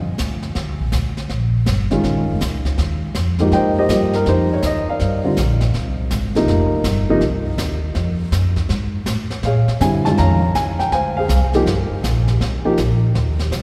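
A dark, mellow upright piano sits up front with the melody in this relaxed, playful swinging jazz piano trio piece, pausing at 7.2 seconds and returning at 9.5 seconds. A pizzicato upright bass, woody and thumpy on steel strings, holds down the low end throughout. A brushed drum kit with a high-tuned snare, boomy kick and hi-hat enters at 0.2 seconds, sitting lower in the mix with an airy, polished tone, and a long cathedral-like reverb gives the recording the spacious sound of a church or concert hall.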